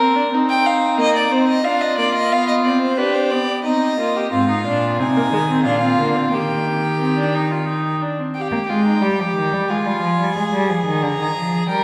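Driving and serious, this excerpt of a baroque-style fugue for string quartet in 3/4 sets a single bowed melody violin with light vibrato and reedy period gut-string tone above a dark second violin and a rich viola, joined at 4.3 s by a nasal cello bass while the viola drops out at 8.4 s, the lower three parts sounding distant inside a wet concert hall reverb.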